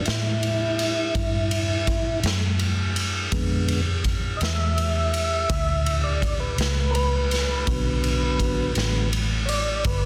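A lightly overdriven tonewheel organ with key click and a slow rotary speaker takes the lead with sustained chords from the first moment, with a dark, round, foam-muted fingered electric bass beneath it and a gritty, saturated garage drum kit of punchy kick, snare and ride set up front in a bright stone room, giving this mournful, smoky slow blues fragment in 12/8 a moderate echo chamber glow and a dense, heavily limited finish.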